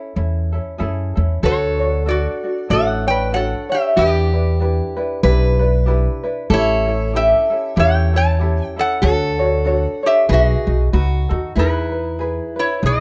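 Sunny and relaxed, this short Hawaiian excerpt at 95 BPM in D major swings gently as a metallic, nasal resonator slide guitar played with fingerpicks carries the melody up front with plate reverb, over a bright, thumb-plucked tenor ukulele, a woody pizzicato upright bass entering at 0.2 seconds, and a fingerpicked plugged-in steel-string acoustic guitar adding a second line from 1.4 seconds as the chords move from Dmaj7 through Em7 and A7 to a closing Emaj7, all captured by close, detailed microphones in light reverb.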